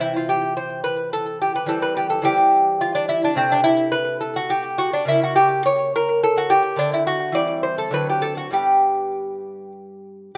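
Radiant and dance-like, this classical, baroque-style dance for solo lute moves in 3/4 at 106 BPM with a supple, rubato feel. The lute plays alone for the full 10.4 seconds, fingerpicked on gut strings with paired courses and some octave-doubled strings, giving a bright, delicate tone that sits up front. A slapback echo trails the instrument, and light reverb with a touch of studio ambience frames it in what sounds like a rough home demo mix. The harmony begins in C major and turns toward G major from 3.4 s, passing through a shadowy diminished chord before D, D7 and a final arrival on G. Cut from a longer piece, the passage stops on that G chord as though poised to continue.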